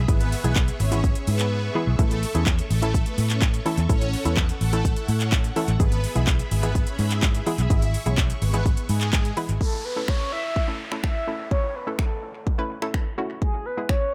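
This carefree, euphoric dance-pop cut opens on a drop, with a punchy house drum kit of kick, metallic hats, snaps, handclaps and shaker sitting up front alongside a dark, round, foam-muted electric bass that pumps against the kick. Warbling vintage string-machine violas hold sustained chords through an ensemble chorus, while a hollow, nasal square-wave pluck bounces through the accompaniment with detuned chorus and analog delay trailing behind it. A crisp, band-limited group handclap adds a very quiet human touch, and the drums drop out briefly between 1.5 and 2.0 seconds before returning. At 9.6 seconds the strings and bass fall away as a mellow, horn-like synth lead takes the melody, its sawtooth tone shaded by tremolo, vibrato and delay, while an electronic downlifter sinks beneath it. The mix is echo-heavy with light reverb, moving between A and E/G# chords.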